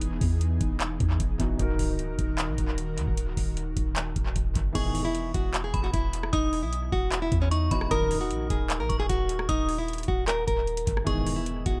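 This menacing, dark hip hop and trap fragment, cut from a longer piece, opens on a felt-muted upright piano sitting softly in the background with tape echo, beneath an airy, breathy pad thickened by chorus. Underneath, a booming analog drum machine and a clean 808-style bass carry the groove at 152 BPM in a half-time feel. The drums are up front, with a deep kick, metallic hats, handclaps, rim clicks and crash cymbal, while the bass is sine-like, boomy and decaying. At 4.8 seconds a small, bright fingerpicked nylon-string guitar takes the melody. It is joined by a ringing, inharmonic FM bell as a second line and by round synth brass stabs in the background, both treated with chorus and tape echo. The harmony moves between Emaj7 and Ebm, the pad returns at 11.1 seconds, and the whole sits in an echo-heavy mix with light reverb.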